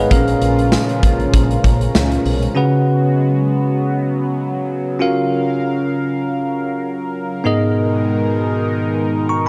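Glossy and nostalgic, this excerpt of 1980s-style pop moves at 98 BPM with a light sixteenth-note swing, its bright, bell-like tine electric piano up front and a smooth analog pad with chorus and phaser sustaining chords through an echo chamber's dark, warm glow. For the opening seconds a big rock kit with punchy kick, snare, hi-hat and tambourine joins a round, hollow fretless bass and fat, nasal synth brass stabs sitting in the background, but the bass and brass stop at 2.5 seconds and the drums at 2.6. From there the electric piano and pad carry the harmony alone, moving from C#7sus4 through F#maj7 to G#madd9.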